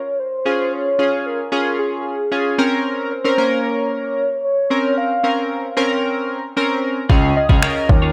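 A velvety sawtooth synth lead with chorus, vibrato and digital delay opens this summery, upbeat dance-pop excerpt at 113 BPM, carrying the melody over a Db to Bbmadd9 progression. From 0.5 seconds, glossy, bright retro synth keys with pulse-width modulation, a filter sweep and sidechain pumping fill in the accompaniment. At 7.1 seconds a clean, compressed twelve-string electric guitar riff, a grand piano bass line with its own pumping, and an up-front electronic R&B kit of finger snaps and a soft, tape-warm kick all arrive together under light reverb.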